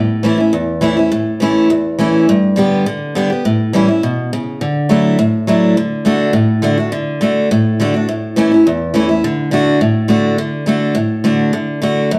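Rustic and virtuosic, this is a brisk bluegrass passage in D major at 207 BPM in a straight 4/4, cut from a longer piece. A single picked steel-string acoustic guitar carries everything as a solo, sitting up front with a warm, concert-ready tone that spans from E2 up to G4. The first section moves from A through G and back to A before settling on a Dadd9. At 5.8 seconds a second section begins, moving from D to A and back to D as the excerpt runs to 12.2 seconds. A generous large-studio reverb gives the guitar a roomy, live-in-one-room sound.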